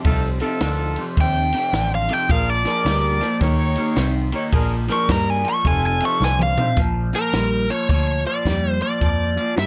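The sound is dry, with little reverb, in this laid-back, rollicking electric blues shuffle at 107 BPM, swung in 4/4 in B-flat mixolydian and tuned a touch flat, to A4 = 437 Hz. Underneath, a vintage fingered electric bass gives a round, foam-muted, amped low end. A compact cocktail drum kit adds hi-hat, ride, snare, toms and a tight kick, with dark cymbals and a high-tuned snare. An electric guitar through a small old amp plays the riff, slightly broken-up, lo-fi and compressed, with a phaser colouring its tone, while a dark, vintage-styled horn section punches tight jazz stabs with light vibrato until 6.7 seconds. From 1.2 seconds a biting, overdriven lead guitar sits up front, soloing high over the changes as the harmony moves through F7, Bb7 and Eb7. A drum fill at 6.2 seconds leads the passage into a new section that lands on a plain Bb chord, before this cut from a longer piece ends.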